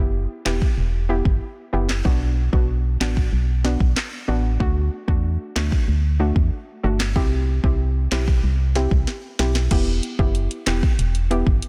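An organ-like FM bass, hollow, dark and percussive, anchors this bouncy, hypnotic dancehall excerpt in E minor at 94 BPM, joined at 0.5 seconds by an up-front electronic afro-pop drum kit with a deep kick, sharp snare, handclaps, hi-hat and crash, while a soft, round, mellow pluck with chorus and sidechain pumping sits quietly beneath, cycling through Em, Bm, D and C before a drum fill at 9.1 seconds leads into a new section back on Em at 9.7 seconds, all in a digital ambience with a dense, heavily limited modern master.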